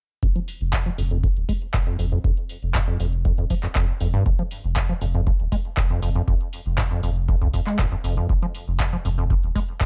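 A straight 4/4 pulse of deep, tape-warmed electronic kick and an analog drum machine's handclaps and metallic hats, both re-recorded in a large room, drives this raw acid house fragment, where a rubbery, resonant square-wave acid bass riff sits up front over a round, sustained sawtooth-and-sine bass with sidechain pumping, in a dark, dry production.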